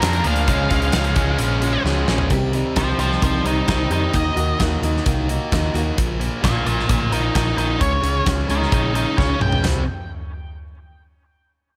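Quiet-loud alternative rock with an angsty, dark mood, this cut from a longer piece puts a fuzzy, distorted octave-fuzz lead guitar with tape echo up front for a solo from 2.3 to 9.6 seconds, driven by a biting overdriven riff guitar, a growly, punchy overdriven picked bass and a big rock drum kit with a fat snare and tight kick in a big room, while a bright high-gain distorted guitar and a very quiet double-tracked overdriven guitar play riffs only until 2.3 seconds and a boxy, swing-style plugged-in acoustic guitar picks echoing arpeggios in the background, the whole mix sitting in light small-room reverb.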